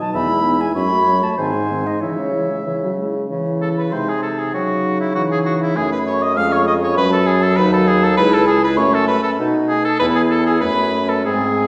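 In a rubato 2/4 at 92-102 BPM, this stormy, urgent classical-period movement for wind quintet in C# minor, cut from a longer piece, sets an up-front oboe with light vibrato on the second line from 0.1 s against a pure, tongued flute melody sitting in the background, while a dark, smooth-topped French horn and a soft-attacked clarinet accompany and a warm bassoon with a slight vibrato carries the bass, all heard through a wet recital-hall reverb.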